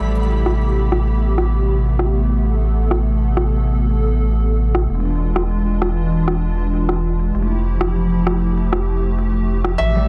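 A deep, round sine sub bass sits up front beneath a hollow, flute-like pad whose detuned square and triangle tones warble through ensemble chorus, holding Am9, E7b9 and Fmaj9 in this intricate, cerebral IDM excerpt in A minor at 98 BPM. An acoustic concert harp rings thumb-plucked arpeggios through tape echo in the background until 3.2 seconds, while a produced electronic kit of crisp, low-pass-filtered hi-hats, rim clicks, shaker and crash cymbal, re-recorded in a small room with digital delay, runs until 9.9 seconds. At 9.8 seconds a very quiet, felt-muted upright piano touches a single mellow E5 as the harp briefly returns, with light reverb on a dense, heavily limited master.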